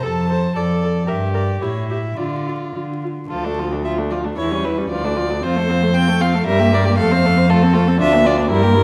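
In a quick 2/4 at 104-120 BPM with a rubato feel, this lively, graceful classical-period string quartet movement in D minor is cut from a longer piece and moves from F through A7 and Dm toward a closing Bb/D. An up-front first violin carries the melody with light vibrato and a rich gut-string tone, a nasal second violin traces a second line, the viola adds smooth-topped accompaniment, and the reedy cello holds the bass, sounding both up front and distant. The bowed, period-style playing sits in a wet recital hall reverb with vinyl crackle, shifting to a new section at 3.3 seconds before the excerpt ends at 8.8 seconds.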